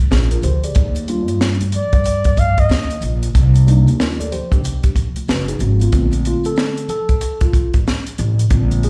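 Heard through a big sound system in a bare room with large studio reverb, this smooth, cool jazz-hop snippet in Bb major swings at 93 BPM, with woody, thumpy pizzicato upright bass on gut strings and a dry, punchy cocktail drum kit with a high-tuned snare up front, very quiet bright maracas and congas, a mellow, clean tine electric piano in plate reverb, a breathy, vibrato-laced flugelhorn phrase from 1.8 to 3.0 seconds, and the electric piano taking a solo from 5.9 seconds as the chords move to Bbmaj9.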